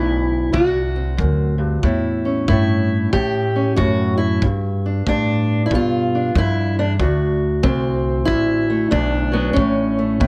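A relaxed swing in four rolls underneath this short acoustic country blues clip, giving it a laid-back, swaggering gait. A fingerpicked steel-string parlour guitar carries the melody up front, its tone dark and boxy as it ranges from low bass notes into the middle register. Beneath it, a pizzicato upright bass with gut strings adds a woody, thumpy foundation. A tight kick drum played with brushes enters at 0.5 seconds and sits in the background, its sound mid-forward and rolled-off on top, as if captured in a small room. The harmony moves through D7, A7 and G7 before returning to D7 and landing on A, all wrapped in light reverb.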